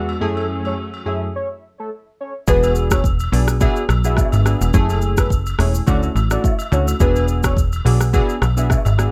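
Afrobeats in a smooth, mellow mood, cut from a longer piece. Round, detuned analog keys with chorus and a velvety synth lead carrying tremolo and tape echo open over distant agogo bells and woodblock, with a bowed string section briefly in the background before a stop at 1.3 seconds. At 2.5 seconds a punchy, funky analog bass and an up-front electronic drum kit with a deep kick and metallic hats arrive, giving the groove its gentle swing under light reverb.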